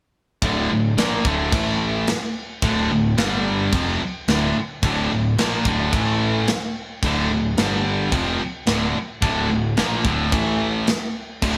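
A heavy metal band bursts in together at 0.4 seconds, playing live in a moderate stone room that lends the sound a sense of space. Up front, a bright, high-gain distorted guitar drives the riff, double-tracked and picked, while a second overdriven guitar, warm in tone and double-tracked too, plays the riff from further back. Beneath them, a fuzz-laden picked bass with a growly, overdriven edge sits in the background, and a tight acoustic drum kit, mid-forward with a medium-tuned snare, tight kick and crash cymbal, stays prominent in the mix. The riff cycles through a D minor chord and power chords on A, D and G, giving the aggressive, epic mood a steady weight in a straight four. The whole band holds this single section until the cut at 11.6 seconds.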